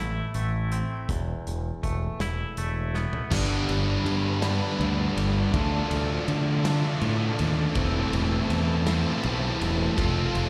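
A slow, straight 6/8 pulse at 54 dotted-quarter beats per minute drives this brooding, angsty fragment of quiet-loud alternative rock in A minor, cut from a longer piece. It opens with a clean, compressed twangy electric guitar playing arpeggios over an overdriven, growling fingered bass that sits up front, while a loose indie drum kit with a tight kick, medium-tuned snare and dark cymbals plays along in a small room. A drum fill at 2.9 seconds leads into the loud section at 3.3 seconds, where the arpeggios stop. There, a biting overdriven guitar riff with phaser is joined by two thick, bright fuzz guitars, one double-tracked and one with slapback echo, that sit in the background. Behind them, a bowed studio string section holds sombre chords with expressive vibrato and portamento, and the whole passage sounds like a live gig heard through the venue's PA, with recital hall reverb, until it breaks off at 10.5 seconds.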